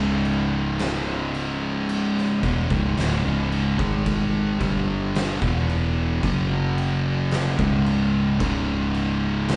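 A slow, straight 4/4 pulse at 55 BPM drives this sludgy, hypnotic stretch of stoner and doom metal in C# phrygian, cut from a longer piece, with two thick fuzz guitars playing the riff up front over a C#m that moves to F#5 at 6.2 seconds and C#5 at 7.6 seconds. Underneath, a round, punchy hollow-body short-scale bass with tube saturation holds the low end, while an oversized low-tuned drum kit enters at 0.2 seconds with a boomy kick, fat snare and dark crash cymbal, its sound gritty and saturated in a bright stone room. The band plays live together in one room with moderate reverb, and the top end is rolled off for a murky, heavy finish.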